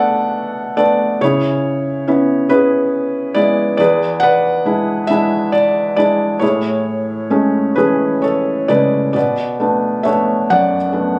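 Melancholic and reflective, this brief classical passage for a single felt-muted upright piano unfolds in 6/8 with a loose, rubato feel. The piano sits up front and sounds soft and intimate, its thin felt giving each note a muted, mellow edge, and the mechanism's action noise is clearly audible beneath the tones. The lyrical line spans from low E2 up to F#5 and moves through Bm7, C#m7, E7 and Amaj7 before returning to Bm7 at 9.2 seconds, where the opening material begins again. Captured on a phone in the room, the sound carries a light club reverb and some compression. The recording is cut from a longer piece and stops at 11.2 seconds.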